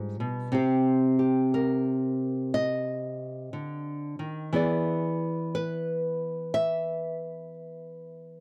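A lone nylon-string guitar, dark and small in tone with audible finger squeak, fingerpicks a sophisticated, relaxed solo jazz passage at 60 BPM with a swung feel, moving from G7 to Cm7 and then E7 at 4.5 seconds, sitting up front in a dry, close 1970s-style studio sound with light reverb in this brief cut from a longer piece.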